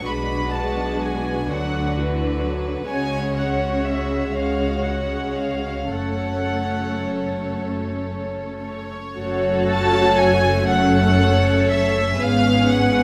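A classical slow movement for string orchestra, this short passage cut from a longer piece moves in a rubato 6/8 with a yearning, melancholic mood. A violin section carries the melody high above the ensemble, its sound pure and floating with a soft, sul tasto attack, while a second violin section sits just beneath with a rich, intimate tone and light vibrato, both placed close and up front. Violas fill in the accompaniment with a dark, woody vibrato, and the double basses anchor the bottom with a distant, lush sound. The cellos share the bass role from further back, warm and pure with a smooth top to their tone. All five sections play together from start to finish, and the harmony drifts from B minor through an open F# sonority toward F# minor before a shift near 9.2 seconds leads to a final open chord over G# at 12.2 seconds. Close, detailed microphones capture the strings within a moderate recital-hall reverb.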